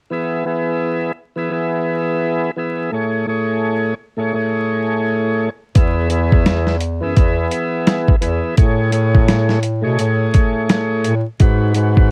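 Soulful and confident, this boom-bap hip-hop fragment rides a swung 4/4 groove with a dry, lo-fi home-cassette character and a layer of vinyl crackle. An overdriven tonewheel organ opens alone, its thick, gritty tone turning through a slow rotary speaker and filtered and tape-worn as it moves between E and Amaj7 chords. At 5.8 seconds a dusty, sampler-style drum kit arrives up front, compressed, with a thumpy kick, a medium-tuned snare and hi-hat. A mellow bass clarinet enters at the same moment to carry the low end, its smooth top and classical phrasing colored by transformer saturation. The harmony settles briefly on G#m7 near the close before the piece cuts off at 12.1 seconds.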